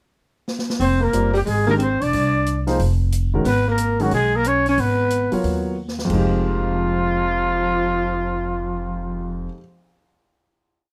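A raspy, growling trumpet carries a motif-based melody with scooped notes and vibrato, doubled an octave below by a subtoned alto saxophone in this searching, cool modal jazz piece in F dorian at 182 BPM with a swung 4/4 feel. An upright bass plays a woody pizzicato two-feel, a grand piano with audible action noise adds syncopated quartal comping, and a drum kit with dark cymbals and a boomy kick keeps stick time on the hi-hat after a fill at 0.5 seconds. The harmony moves from Fmadd11 to Abm11, then a second drum fill leads to a held Fm11 final chord at 6.1 seconds, all captured by close, detailed microphones in light reverb.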